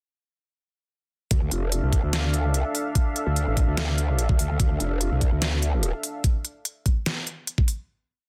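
A half-time beat of overdriven, knocking electronic kick, deep snare and crisp closed and half-open hats arrives at 1.3 s to launch a menacing, aggressive heavy wobble dubstep drop, where an up-front growl bass with chorus and overdrive changes its wobble speed across modulated phrases beneath a lush, detuned supersaw pad of sustained chords carrying gritty 12-bit sampler texture, sidechain pumping and a low-pass filter, the whole sealed in a dense, heavily limited master with light digital reverb.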